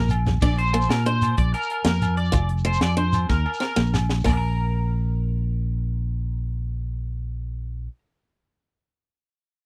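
Joyful and warm, this brief highlife guitar band cut moves at 125 BPM in a straight 12/8, in B-flat major, with the chords stepping from Bb to F to Eb5. A woody, boxy acoustic archtop with old strings picks the accompaniment while a twangy, slightly broken-up electric guitar plays high arpeggios through analog chorus and slapback echo. Underneath, a growly fingered electric bass sits up front. A dry, polished funk kit with bright cymbals, a high-tuned snare and a tight kick drives the groove, joined by ringing agogo bells and a grainy shekere in the background. The drums open with a short fill and roll into a longer one from 3.3 seconds. At 4.3 seconds the drums, percussion and archtop stop, leaving the electric guitar and bass to carry on alone in a close, dry 1970s-style studio sound.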